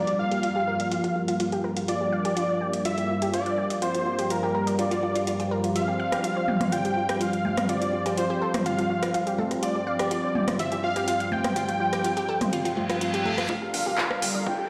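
Expansive and bittersweet, this progressive house passage at 124 BPM in G minor opens with a thick, nasal unison lead carrying the melody over an airy filtered supersaw swell of sustained chords, a bright detuned analog pluck spinning arpeggios through tape echo, and a downlifter falling away in the background, all set in a lush hall reverb heard on a big system in a bare stone room. An overdriven deep house kit with metallic hats and handclaps pumps underneath. It is joined at 6.1 s by congas, rim clicks and toms, shortly after the harmony moves from Gm7 to Fsus2/G, while filter sweeps move across the pluck and supersaw. A reverse cymbal and riser lead into a build-up at 13.5 s, where a punchy overdriven electronic kick and a mellow plucky analog bass briefly appear before the cut.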